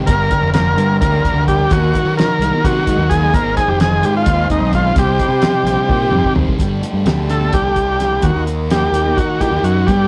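Trippy and mysterious, this psychedelic rock passage, cut from a longer piece, pulses in an odd 7/8 metre at 258 BPM counted in eighths, captured as a rough rehearsal-room recording with moderate studio reverb. A buzzy, overdriven combo organ sits up front carrying the melody with heavy vibrato, while a thick, double-tracked fuzz guitar churns out a picked riff in the background through distortion and phaser. Underneath, a growly fuzz fingered electric bass drives the low end with overdrive, and a cloth-damped, thuddy drum kit with a fat snare, tight kick and rolled-off top keeps a dry, dark pulse across hi-hat, kick, snare and toms. Muted, con sordino symphonic strings hold veiled sustained chords with light vibrato and a soft attack, and very quiet, high-tuned congas add a thin, vintage patter. The chords move through Gm, Ebm, Ab and Cm until a drum fill at 5.9 seconds leads into a shift to G harmonic minor at 6.6 seconds, where the transistor combo organ takes a solo over Gsus2 and Ebm through the close.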